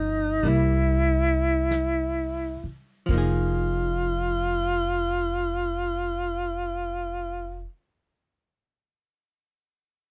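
A slow swung 4/4 pulse of 42-49 BPM, easing down over the first 3.1 seconds, sets this melancholic, smoky jazz ballad in F minor, a short cut from a longer piece with little reverb around it. The breathy tenor saxophone carries the melody up front as the solo voice, its soft attack, vibrato and scooped notes hovering in a narrow span between Eb4 and F4. Beneath it, the upright bass plays pizzicato with a woody, steel-strung tone, sitting close and present in the low register. A miked, amplified hollow-body archtop guitar picks out dark, clean accompaniment, moving from a C7 chord to Fm7 at 3.1 seconds. A vintage brush drum kit in a small, pumping room joins at 0.4 seconds with brushed snare, hi-hat and a punchy kick, its rolled-off top keeping it in the background until it drops out at 3.8 seconds.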